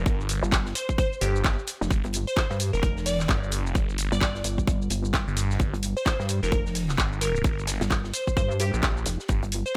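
Bass house at 130 BPM in G minor, bouncy and gritty, with a 16th-note swing in this short cut from a longer piece. A glassy, crystalline wavetable pluck carries the melody through chorus, cassette tape and delay, over two up-front basses: a swirling, thick detuned saw bass with phaser and overdrive, and a pulsing, heavy pluck wobble bass with tube saturation that enters at 0.4 seconds, both pumping against the sidechain. A tight, up-front electronic kick and a tape-warm garage kit of handclaps, hi-hat and shaker drive the groove, with a very quiet acoustic funk kit adding hi-hat and a high-tuned snare, all in a fairly dry mix.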